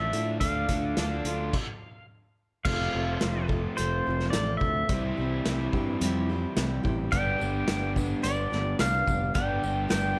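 A bright, twangy pedal steel guitar carries the melody up front, its clean, compressed slide lines and volume swells bathed in plate reverb, in this nostalgic folk rock and heartland rock excerpt with a straight 4/4 feel. Beneath it, a picked steel-string acoustic guitar, a crunchy double-tracked overdriven guitar riff with spring reverb, a warm fingered electric bass and a punchy vintage drum kit with dark cymbals in a small, pumping room come to a brief stop at 1.5 seconds before moving into a new section at 2.7 seconds. A distant, jingly tambourine joins in the background at 7.1 seconds.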